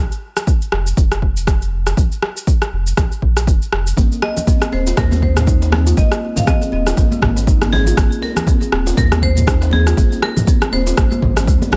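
A punchy electronic kick sits up front in this driving, earthy afro house excerpt at 120 BPM in 4/4, with a 57% swing on the sixteenths giving the groove its lilt. A round sine sub bass pumps under sidechain from the first moment, spanning Eb1 to Eb2, and a tape-tinged deep house kit of rim clicks, shakers and toms, re-recorded in a small room, joins at 0.1 seconds. The harmony moves from a Bb5 chord to Ab at 4.0 seconds, where the texture fills out. Bright, high-tuned congas and a deep djembe with metal rattles, both played with soft hands, sit in the background. A woody, mellow kalimba enters at that same point with short plucked arpeggios, pumping and echoing through delay. Moments later a marimba struck with hard mallets adds an airy, percussive melody between Ab4 and F5, also carried on delay.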